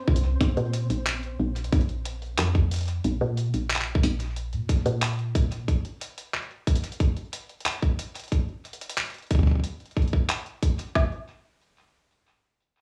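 Glitchy and wistful, this short IDM excerpt moves at 91 BPM in a straight 4/4. An organic electronic drum kit sits up front with a tight kick and a woody snare, dressed in studio ambience and the grain of cassette tape. Beneath it, a jungle sampler-style kit adds finger snaps, handclaps and hi-hat, its sounds pitched up, compressed and gritty, with tape echo trailing behind. A soft, round FM bass ranging from Bb1 to Bb2 has a fast attack and a dark, decaying tone, and it drops out at 5.6 seconds. Both kits carry on until about 11 seconds, when a brief closing section arrives. The whole has the close, homespun feel of a cassette recording with little reverb.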